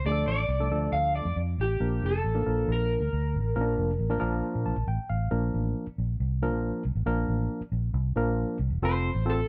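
A slightly broken-up, lo-fi electric guitar through a small old amp carries the picked melody with a lush chorus, dropping out at 4.9 seconds and returning at 8.8 seconds in this danceable, uplifting uptempo 1960s-style soul piece at 137 BPM, tuned to A4 = 439 Hz. Beneath it, a round, foam-muted fingered electric bass and a worn, slightly out-of-tune tine electric piano heard through its built-in speakers move from Dm to Bb, with the piano adding a fill from 4.4 seconds. Light reverb and a dark, warm production tie the sound together before the music settles on F.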